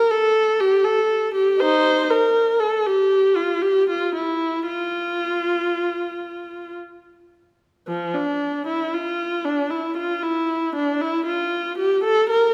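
Flowing and serene, this short passage from a baroque-style suite movement for unaccompanied viola moves in an unhurried three-beat metre with free, rubato phrasing, tuned slightly below modern concert pitch. A single bowed viola, warm and expressive, sits close and up front for the full 12.5 seconds, ranging from F3 to C5 with vibrato and portamento colouring its line. A lush recital-hall reverb surrounds the instrument with a gentle, lingering bloom.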